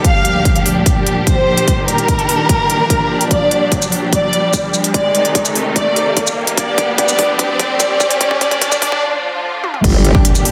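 A dense, heavily limited modern master with moderate digital room reverb frames this aggressive, heavy wobble dubstep, cut from a longer piece and moving at 147 BPM in a half-time 4/4 feel in G minor. An up-front, expressive violin section with delay carries the melody over distant, lush bowed string chords that pump with sidechain and sweep through a low-pass filter. Meanwhile a punchy, tape-warm electronic kick and a crisp-hatted kit with crash, shaker and toms drive a build-up with a riser and drum fill through chords from Bb6/D and Ebmaj7 to Gm7 and Cm. After a brief break, an impact lands at 9.8 seconds as a saturated, growling bass with chorus and overdrive hits a low G1, followed at 10.1 seconds by a bright, detuned sawtooth stab in the manner of an orchestra hit.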